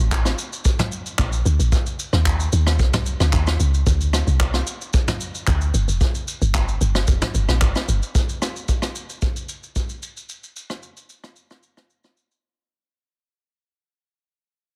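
Amapiano in a relaxed, easygoing mood, this short passage is cut from a longer piece and sits in a straight four-beat groove. A deep log drum bass sits up front from the start, its round, percussive tone built on an FM sound with a layer of noise, striking fast and decaying into a dark low end. A vintage brush drum kit enters at 0.1 seconds, played with brushes in a natural studio room, with a punchy kick, rim clicks, toms, shaker and handclaps, its top rolled off to a mellow, warm glow. The log drum bass stops at 8.0 seconds, leaving the kit alone as the passage moves into its second part and fades out through 12.4 seconds. The sound is dry, with very little reverb, and heavily squeezed into a compressed radio-style tone.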